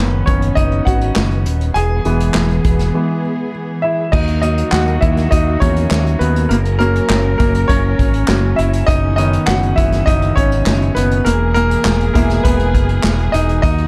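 A clear, intimate grand piano opens this driving, earnest piano-driven pop excerpt at 101 BPM in a straight 4/4, its action noise audible and its polished tone sitting up front. A bright, punchy fingered electric bass and a lush, bowed string section holding smooth sustained chords in the background sound from the start, with an acoustic drum kit joining at 0.3 seconds. Played with bundle sticks, the kit has a distant, roomy character, with dark cymbals, a medium-tuned snare, a punchy kick, hi-hat, crash and handclaps. The piano carries the featured part throughout, with a break between 2.9 and 4.1 seconds before the second section begins. The harmony moves from Badd9/F# and E into Ebm and Gb, then returns to Badd9/F# and E, all framed by light reverb, studio ambience and a dark, warm production.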